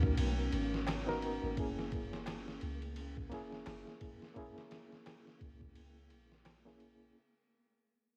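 A melancholic, smoky trip hop excerpt at 86 BPM opens with a barky, lightly overdriven reed electric piano carrying fast tremolo, harmonic tremolo and a filter sweep over a G#m7 to F#7 change, alongside a dark, detuned analog pad with chorus, a deep, round 808-style bass, and a gritty, pitched-down sampler drum kit with a thumpy kick, sitting up front. A grainy, flickering granular texture hovers in the background, and a crisp metal-shell darbuka played with soft hands joins at 0.9 s. The whole fragment fades out, steeped in cassette tape warmth, tape echo on the piano and vinyl crackle in a home-recorded ambience.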